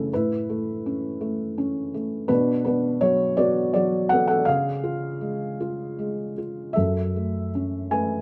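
A felt-muted upright piano carries this short classical fragment alone, its thick felt giving each note a soft, mellow, intimate tone that sits up front in the sound. The playing is lyrical and reflective with a dark cast, moving in an unhurried 3/4 at about 81 BPM, with uneven beats and a free rubato feel. Set in F# minor, the harmony moves from Aadd9 to Bm, then to C# at 4.5 seconds, before settling on F#m7 at 6.7 seconds. The piano spans a range from F#2 to G#5, and close, detailed microphones capture it with only a light touch of reverb. Lasting just 8.2 seconds, the passage is cut from a longer piece.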